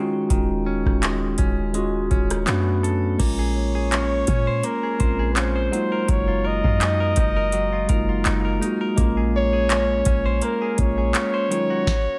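A mellow tine electric piano and a bright, twangy clean guitar playing arpeggios open this late-night, sensual contemporary R&B excerpt in Bb minor at 83 BPM, over a lightly swung 4/4 and chords moving from Ebm11 through Bbm9 and Gbmaj13. At 0.3 seconds a deep, boomy 808-style sine bass and an up-front analog drum machine join, with a deep kick, tonal snare, handclaps, rim clicks, metallic hats and a crash, all tape-tinged, with the snare, claps and hats set in a short room. From 3.6 seconds a mellow flugelhorn with light vibrato carries a jazz-style solo melody out front, all wrapped in light reverb and digital ambience.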